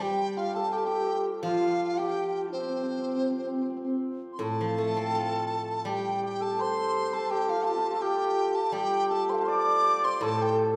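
This Chinese traditional piece for chamber ensemble has a festive yet pastoral mood, moving at 82 BPM in 2/4 with a loose, rubato feel in the C zhi mode. A mellow, hollow dizi carries the melody up front, its pure bamboo tone edged by a buzzing membrane, with gentle vibrato and soft attacks. Beside it, a bright hammered dulcimer plays a shimmering second line that rings out close to the listener, while a husky horsehead fiddle, bowed by one player on horsehair strings, adds its own expressive second line with vibrato and portamento. Underneath, a steel-string zither played with fingerpicks provides a silvery, resonant accompaniment in the lowest register. The ensemble is heard from further back in a wet recital hall, and the music moves into a new section at 4.4 s before this short cut from a longer piece ends at 10.8 s.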